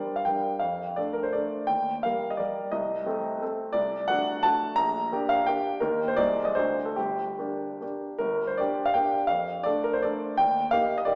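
Classical romantic triple-time dance for solo grand piano with dotted rhythms and free rubato, capricious and wistful, its clear, intimate tone sitting up front with audible action noise, heard across 11.2 seconds through a wet recital hall reverb with a small speaker sound, in a brief cut from a longer piece.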